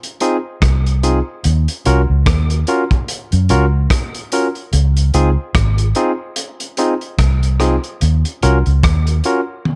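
A swung, unhurried 4/4 groove opens this romantic, smooth lovers rock reggae fragment, with a crunchy, gritty breakbeat kit of hi-hat, tight kick, rim click and toms, dark and saturated with a rolled-off top under gated reverb. A bright, barky tine electric piano, lightly overdriven through a combo amp, enters at 0.2 seconds with accompaniment moving between Dbmaj7 and Ebm7. A vintage foam-muted fingered bass, round and punchy, joins at 0.6 seconds and sits loudest and up front in a studio reverb.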